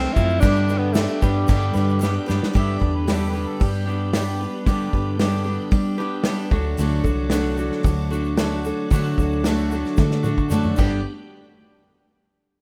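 Folk rock with a heartland rock lean, this jangly, nostalgic excerpt moves at 113 BPM in a straight 4/4 in G major, cut from a longer piece. A breathy, whispered tenor saxophone carries the melody only until 2.3 seconds, its soft attack and scooped notes giving way to a mellow, distant harmonica on the second line. Underneath, a bright picked steel-string acoustic guitar with fresh strings and audible finger squeak picks out the accompaniment, while a twangy, slightly broken-up electric guitar plays a riff and a round, dark hollow-body bass holds the low end. An unplugged drum kit played with bundle sticks sits up front with a punchy kick and medium-tuned snare, adding fills around 2.0 and 10.0 seconds, and a grainy tube shaker ticks in the background. A very quiet tonewheel organ with key click and slow rotary sustains chords beneath it all as the harmony shifts from G to D and back to G. 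The rough home demo mix carries light, small-room reverb.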